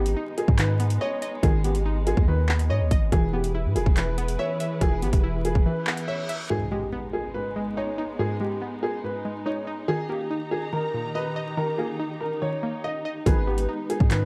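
A dry, dark and warm production with a layer of vinyl crackle frames this tense, ominous drill excerpt in G# harmonic minor, running at 142 BPM in 4/4 with a half-time feel. A worn, boxy grand piano carries the melody with audible action noise and tape echo, while a glassy, crystalline wavetable pluck with chorus and a filter sweep supplies accompaniment, and a distant, woody string section holds lush bowed chords underneath. A deep, sine-toned 808-style bass sits up front alongside an electronic drill kit of hard-clipped kick, metallic hi-hats and handclaps; the bass drops out at a break around 5.7 seconds, and the drums follow shortly after at about 6.4 seconds. A reverse cymbal leads into an electronic impact at 6.5 seconds, opening a second section where piano, pluck and strings continue over chords moving from G#m to D#. At 13.3 seconds the bass and drums return, and a velvety sawtooth synth lead with chorus and tape echo adds a brief single note before the excerpt is cut off.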